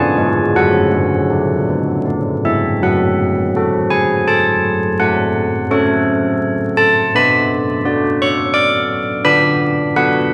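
Vinyl crackle and a faint mains hum sit under a wet church reverb with a three-second tail as solo carillon bells, up front and bronze with a minor-third overtone and an iron clapper's ring, play a serene yet festive classical tune in F# minor at 84 BPM in 3/4, cut from a longer piece and moving from F# minor to B minor by 7.1 seconds.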